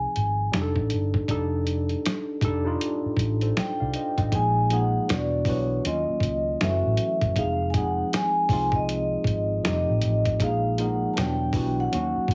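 A mellow, soft-mallet vibraphone carries the melody with a slow motor vibrato. Beneath it sit a worn, slightly out-of-tune tine electric piano and a dark, round, foam-muted fingered bass, and a gritty, tape-toned soul sampler drum kit of finger snaps, hi-hat, thumpy kick and snare joins at 0.2 seconds. This introspective, late-night neo-soul R&B moves at 79 BPM in 4/4 with a swung sixteenth-note feel, drifting through seventh and ninth chords that open on Fm7, and the mix carries light reverb and a heavily compressed, radio-like sound.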